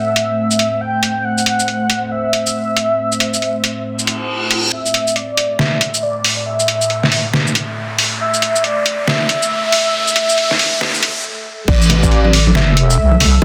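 Meditative and heavy, this deep dubstep piece at 138 BPM moves in a swung half-time A dorian feel, opening with a breathy, flute-like synth lead carrying dub echo over a dark, full-bodied ambient pad and a gritty, pitched-down trip hop sampler-style kit of snare, hi-hat, shaker and crash; a reverse cymbal at 4.1 s leads into a build with filter sweeps on the lead and pad beneath an electronic riser, then a brief stop gives way at 11.7 s to a drop with a saturated, up-front wobble bass, a tight, layered electronic kick and bright, band-limited congas in the background, the mix sitting in echo-chamber reverb under a dense, heavily limited master.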